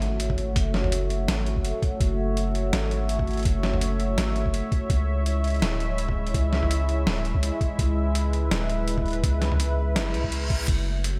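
With light reverb, this heavy, dark half-time drum and bass excerpt opens on an electronic impact as a moody, detuned sawtooth analog pad with chorus and sidechain pumping sustains chords over a deep, mellow 808-style sine bass held up front, while a gritty, pitched-down boom bap sampler kit of crash, hi-hat, medium-tuned snare and toms, re-recorded in a large room, plays from the start and a thumpy compressed electronic kick joins at 0.3 seconds, until a reverse cymbal rises at 10.1 seconds.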